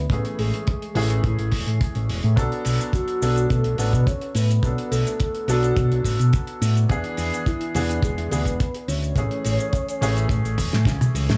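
A steady, straight 4/4 groove from a tight, dry kick and a damped 70s kit with cabasa, hi-hat, a fat snare and toms drives this sensual, sleek nu-disco excerpt, with a drum fill closing it at 10.6 seconds. Up front, a fingered electric bass with an envelope filter and tube saturation pumps against the sidechain, while a worn baby grand piano with long sustain and dub echo carries the chords in a small room. Above them floats a soft, dark octave-layered synth lead, round and full, colored by chorus, tremolo and vibrato.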